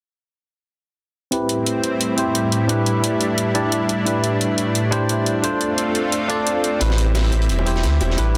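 A 175 BPM groove in 4/4 with a light swing on the sixteenths drives this dreamy, melancholic liquid drum and bass excerpt in A minor, cut from a longer piece. From 1.3 seconds an overdriven electronic hi-hat, layered and re-recorded in a small room, ticks beneath a bell-like, barky tine electric piano carrying a filter sweep and digital delay. Meanwhile a thick, detuned sawtooth pad with chorus holds slow-attack chords up front. The harmony moves from Am9 through Em7/A, Cmaj9/A and F6/A over an A pedal before returning to Am9. At 6.8 seconds a deep sine-and-triangle sub bass with an octave layer arrives prominently, joined by a crunchy breakbeat kit of high-tuned snare and hats, gritty and saturated with a rolled-off top. A moment later come very quiet low-tuned bongos played with soft hands. The dense, heavily limited master sits in a moderate recital hall reverb blended with a small room.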